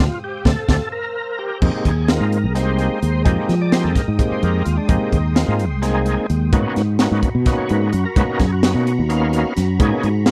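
A band accent opens this slick, intense electric jazz fusion excerpt, with overdriven tonewheel organ, a silky string machine and a punchy fretless bass sounding together from the start, and a crisp, gritty drum kit entering at 0.5 seconds with a fill that leads into the main section at 1.6 seconds. The tune moves at 257 BPM in 7/8 over chords from Dm9 and C7 to Fm11 and Abm11, the thick, percussive organ up front with key click, chorus vibrato and a slow rotary speaker. The fretless bass and the saturated drums, with their high-tuned snare and tight kick, sit forward in a dry mix, while the mellow, evolving string machine with ensemble chorus hangs in the background.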